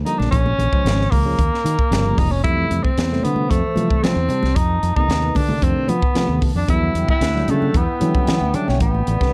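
A round, dark fingered electric bass opens this bright, soaring jazz fusion excerpt, joined at once by a breathy tenor saxophone lead with vibrato, scooped notes and slapback echo, a bell-like tine electric piano in the background, a crisp, punchy drum kit with a high-tuned snare, and very quiet damped congas, while a swirling, phased analog pad slips in at 2.9 seconds beneath the chords moving from Bbm7 toward Am11 in a dark production with light reverb.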